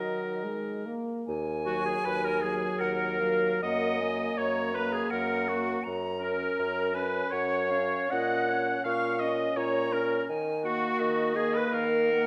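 A slow romantic classical movement for wind quintet, this lyrical and serene passage unfolds in a flowing triple metre with a gently rubato feel, cut from a longer piece. The concert flute carries the melody with an airy tone, vibrato and soft attacks, while the oboe adds a clear second line touched with light vibrato. Beneath them, the clarinet's vintage, clear voice sits prominently in the accompaniment alongside the French horn's warm support. The bassoon anchors the bass up front, dark and smooth-topped with a light vibrato. All five instruments play throughout the 12.3 seconds, and a wet recital hall reverb lends the ensemble a spacious, resonant glow as the harmony drifts from minor toward its relative major and back.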